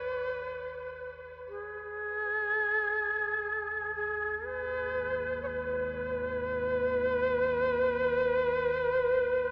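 Drenched in a huge, wet reverb and filtered through a thin AM-radio tone, this 9.5-second fragment of a dark ambient drone piece drifts in free time in G# minor, with an unsettling mood. A bright, reedy shakuhachi carries the melody up front, airy and bamboo-toned with vibrato and tape echo, fading in across the whole passage. Far beneath it, an ominous, rumbling synth drone on a G# minor chord sustains with a slow attack and long release, touched by subtle chorus and a filter sweep.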